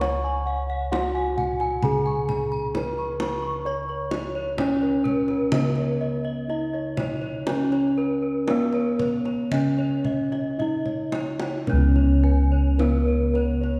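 Bathed in the long, wet reverb of a church or concert hall, this ceremonial Javanese gamelan fragment in slendro sets an up-front bronze metallophone melody struck with a wooden mallet and dark, smooth bossed gongs carrying the bass against brighter horn-mallet metallophone arpeggios with shimmering paired-tuning beats, rounder bossed-gong arpeggios and a tight, vintage kendang played with hard hands, whose drum fill at 10.6 seconds leads into a new section at 11.7 seconds.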